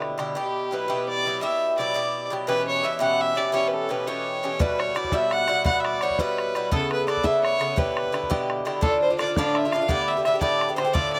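Dark and lively, this driving Celtic jig in 6/8 comes from a longer piece and is led by a rich, earthy fiddle with light vibrato and a smooth top, bowed up front, while a shimmering, ringing hammered cimbalom carries a second line in the background. A metallic, double-strung Irish bouzouki is picked up front as accompaniment, and all three share a slapback echo. A damped, tight bodhran sounds close at the very start, then returns at 4.6 seconds, all in a dry outdoor recording with little reverb.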